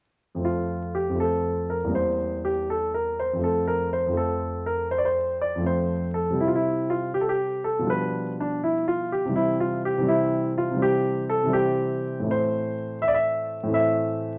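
Vinyl crackle and a moderate stone-room reverb frame this flowing, radiant excerpt of a baroque-style classical suite movement, where a solo grand piano, polished, present and up front with short sustain, plays from 0.3 to 14.4 seconds in F major at 81 BPM in a rubato 12/8, tuned to A4 = 439 Hz and moving through F, C5, G7/B, C and Am before the recording cuts off mid-piece.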